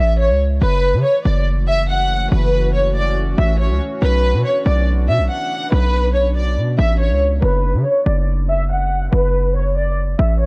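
Tense and menacing, this half-time drill hip hop fragment pairs a dark, woody violin section, low-pass filtered and up front with its vibrato melody, against a punchy, heavy 808-style bass, while a deep, detuned ambient pad with chorus sits in the background from 1.2 to 7.4 seconds over F#m7 and Bmadd9 chords before a filter sweep on the violins carries the final stretch from 7.4 seconds, all in a small room ambience.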